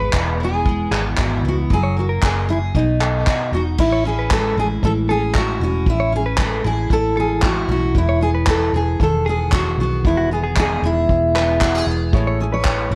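Acoustic pop with a sunny, heartfelt mood, this short cut features an up-front fingerpicked jumbo acoustic guitar carrying the melody with audible finger squeak, a double-tracked woody acoustic guitar with old strings in accompaniment, a compressed direct-recorded clean electric guitar playing arpeggios, a dark, round, foam-muted fingered bass, and a tight small-room unplugged kit of kick, handclaps and crash played with bundle sticks, while a mellow felt-muted upright piano slips in at 12.1 seconds, all under light reverb and the warbling pitch drift of worn cassette tape.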